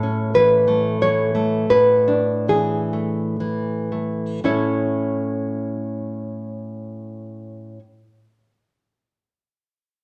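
Romantic solo classical guitar piece in A major and 3/4, with a sunny, warm mood and a rubato feel that moves between 54 and 94 BPM, slowing down over the first 4.4 seconds. The fingerpicked nylon-string guitar sits up front with an acoustic, classical tone and audible finger squeak, moving from A to E7/A and back to A at 4.4 seconds, where a new section begins; the guitar stops at 7.8 seconds. A large studio reverb gives the excerpt a wet, spacious sound.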